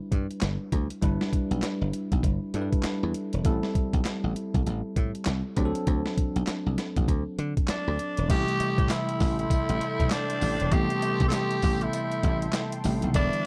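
A raspy tenor saxophone with vibrato takes the lead at 7.7 s in this bouncy, upbeat new jack swing R&B piece at 99 BPM with swung sixteenths, riding over a bell-like tine electric piano with subtle chorus, a punchy, foam-muted thumbed slap bass and a gritty, compressed boom bap sampler-style kit of thumpy kick, snare, hi-hat, handclaps, tambourine and crash, joined at 8.3 s by a very quiet, distant cowbell and shortly after by a swirling, phased analog pad in the background, in a dry, dark production.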